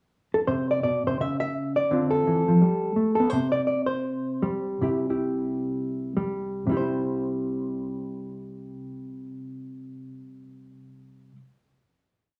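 A moderate studio reverb and small-room ambience frame a dark, clean, compressed hollow-body electric jazz guitar that sits up front in this short, playful solo jazz piece in C major. Entering at 0.3 seconds with a pickup, the guitar plays sparse fingerstyle, motif-based call phrases with a swinging, rubato feel between 113 and 173 BPM, moving through Csus2, Dm7 and Gadd9 before slowing into C. It settles onto a final chord at 6.7 seconds and lets it ring until 11.4 seconds.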